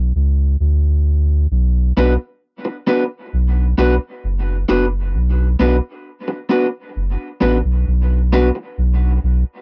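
A soft, round sub bass opens this dub reggae excerpt on its own, sitting deep and up front through a sparse, chordless break in a slow, straight four. At 1.5 seconds the harmony settles onto a minor chord, and the bass carries on with a sustained, fast-attack tone that gives the track its heavy weight. An electric guitar enters at 2.0 seconds, picked and compressed, with a dark, slightly broken-up edge and a dub echo trailing behind it. Both parts sit close and dry in a 1970s-style studio sound with little reverb, and the overall mood is spacious. Near the end the guitar drops out at 8.6 seconds, the chord then shifts to a bare power chord, and the bass continues to 9.4 seconds.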